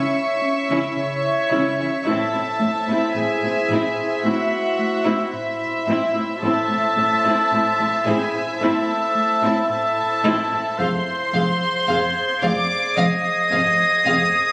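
Heard through a phone in the room, this eerie, tense cinematic fragment carries a club-like reverb over a moderate stage ambience, moving slowly at 55 BPM in 4/4 through C#m, Am and Fm7. Soft-attack violins bowed sul tasto carry a pure, floating melody. A classical-style solo clarinet and a second violin line sound above a close, lightly vibratoed viola accompaniment, while a very quiet, intimate violin texture sits in the highest register. A warbling, lo-fi tape-like pad with chorus sustains dark chords in the background, and a round, deep analog bass riff anchors the low end, joined by background cellos at 0.7 seconds and a dark double bass section at 1.5 seconds.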